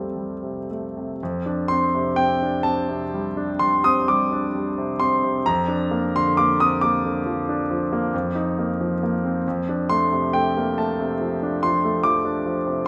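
Serene and dreamy, this short excerpt from a longer impressionist classical work features a solo concert grand piano in F mixolydian, moving in a slow, rubato 9/8 at roughly 36-49 BPM in dotted quarters. The clear, polished piano sits up front and intimate, ranging from F2 to Eb6 with deep bass, long sustain and audible action noise, as its harmony drifts from F69 to Bb/F at 5.5 seconds and settles on F6 at 9.4 seconds. A moderate recital hall reverb gives the instrument a natural sense of space.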